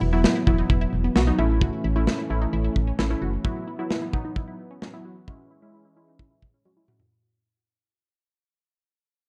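A dark, warm production with light reverb and a small-room ambience frames this brief, nostalgic synth-pop fragment, and a fade-out and filter sweep run across its full length. A slow-attack, detuned sawtooth pad sits in the background with chorus, holding sustained chords, while a lush unison pluck, flecked with noise and a moving notch, spins arpeggios behind it through delay. Up front, a round, punchy FM bass anchors the low end before stopping at 3.4 seconds. A funky, detuned polysynth comp with mellow chorus fills the middle, alongside a tight, smooth acoustic drum kit with rolled-off highs and a medium-tuned snare. Over a wistful Esus2, A and C#m progression, the drums close with a fill from 6.7 seconds.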